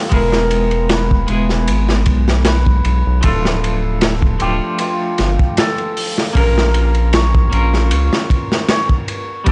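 A hammered dulcimer and a clean electric guitar open this melancholic, dark trip hop excerpt at 77 BPM. The dulcimer carries the melody with a shimmering, ringing tone trailed by tape echo, while the twangy, picked guitar accompanies beneath it through a tremolo effect. At 0.1 seconds a round analog bass and a crunchy breakbeat kit arrive up front. The bass is deep and wave-folded with a fast attack and sustained notes, and the kit's tight kick, medium-tuned snare, hi-hat and dark ride cymbal sound saturated and gritty. The groove sits in 4/4 with a light swing on the sixteenths as the harmony moves from E to Dm to Bbm. The whole passage has a dry, small-room character, with transformer saturation, vinyl crackle and a rolled-off top end giving it a worn, hardware sound.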